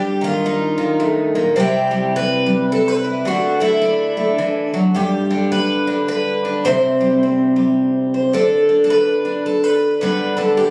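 Gentle and warm, this short folk excerpt features a solo picked twelve-string acoustic guitar, bright, shimmering and octave-doubled, up front in light reverb at 106 BPM in a swung 3/4, moving in G major through Eb/G, C and D before settling on G at 10.0 seconds.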